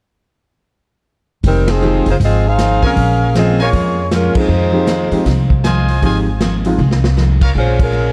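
A tight saxophone section with vibrato carries the sultry melody up front, treated with tape echo, in this brassy big band swing excerpt that moves between Fm7 and Bbm7. Woody pizzicato upright bass, a polished, airy drum kit with a punchy kick and a picked dreadnought acoustic guitar in the background begin at 1.4 seconds, with a natural-sounding upright piano joining at 1.8 seconds. A bright trumpet section adds echoed stabs from 2.8 seconds, with band accents along the way and a drum fill at 6.8 seconds, inside a dark, lightly reverberant studio sound.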